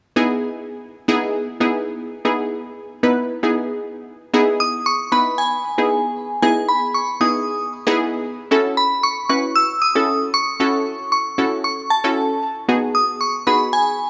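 A glassy, crystalline FM synth bell carries the melody from 4.6 seconds, its chorus, tremolo, phaser and tape echo shimmering over a round, detuned analog pluck with a filter sweep that opens this confident, bittersweet pop fragment, all set in a lush hall reverb as the harmony moves from Emaj7 through F#m7 to G#m7.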